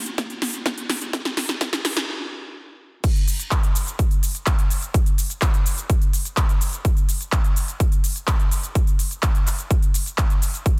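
A straight 4/4 pulse at 126 BPM drives this powerful, anthemic EDM clip, cut from a longer piece. It opens with a build-up carried by a drum fill on a big-room dance drum kit of crash cymbal, handclaps, hi-hat, shaker and snare, followed by a brief stop at 2.1 seconds. The drop lands at 3.0 seconds and holds to the end, anchored by an electronic kick drum that is layered, punchy and overdriven, filtered at the low end and sitting up front. The kit matches it with a punchy snare and crisp hats, also overdriven and forward in the mix. Light reverb adds a digital ambience, and the dense, heavily limited modern master keeps the whole drop tight and forceful.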